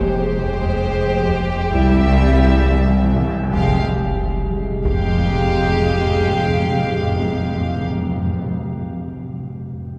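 A slow, uneasy suspense cue in F harmonic minor at 68 BPM opens on soft-attack, sul tasto string sections: violins carry an intimate melody over a floating second line, violas sit in the background, and cellos and double basses hold the bass beside a deep, round sub-bass drone and very quiet, mellow French horn chords. Timpani on medium mallets play a fill from 1.7 s as the harmony moves from Fmadd9 to C, while a very quiet, dry taiko ensemble struck with hard sticks plays until 5.3 s. A huge, dark impact, barely audible, arrives at 3.5 s as Fmadd9 returns, all bathed in a cavernous cathedral reverb in this fragment of a longer score.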